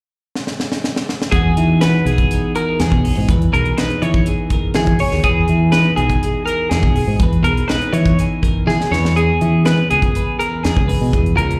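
Playful and intricate, this short cut from a longer math rock and midwest emo piece opens with a crisp fusion drum kit alone, its high-tuned snare and punchy kick playing a fill from 0.4 seconds. At 1.3 seconds, two twelve-string electric guitars and a fingered electric bass join over an Emaj9 chord. One guitar plays bright, twangy accompaniment with slapback echo, while the other picks arpeggios higher up, touched with subtle chorus and the same slapback. The bass sits up front with a growly, direct tone beneath the clean strings. Another drum fill arrives around 8.7 seconds as the harmony shifts to C#m7, and the band sounds like a live gig heard through the venue's PA, wrapped in club reverb and small room ambience.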